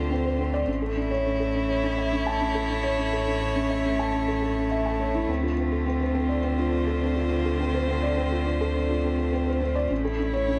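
From the first moment, a felt-muted upright piano, dark and boxy with audible action noise and a touch of tape echo, plays a hypnotic riff up front over sustained, smooth chords from a close, vibrato-laden string quartet and a round sine sub bass, the Dm7 and A harmonies blooming in a moderate concert hall reverb in this cinematic electronica fragment cut from a longer piece.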